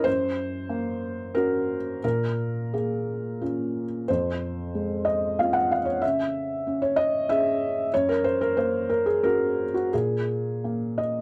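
Neoclassical minimalist piano in 3/4, this reflective, melancholic fragment of a longer piece moves at roughly 85-96 BPM with a loose, rubato feel. A felt-muted upright piano plays alone for the full 11.2 seconds, ranging from F2 up to Gb5. Its tone is soft, dark and boxy, sitting up front with the audible clatter of the action adding an intimate, close-at-hand quality. The harmony drifts from Gb through Bbm7, Fm and Dbm, returns to Gb, and comes to rest on a Bb7 that omits its third near 9.9 seconds. The sound recalls a dry, close 1970s studio recording, touched by only a light reverb.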